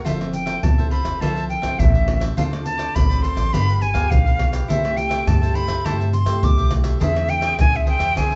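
Nostalgic and yearning, this short cut from a longer samba and choro piece moves in a straight 4/4 feel through a single section built on Fmaj7, Dm7, G7b9, C6 and E7alt. An airy metal jazz flute carries the melody up front, its soft attack and vibrato giving each phrase an expressive, warm glow. Beneath it, a crisp, picked cavaquinho and a dark, thumb-plucked nylon-string guitar in a classical vein fill out the accompaniment from the very start. A woody, thumpy upright bass played pizzicato on steel strings anchors the low end, while maracas, a tight surdo, pandeiro and tamborim sit up front with soft hands and a small-room intimacy. The band plays live together in one room, bathed in a wet, large studio reverb, and the sound holds nothing above 7.9 kHz.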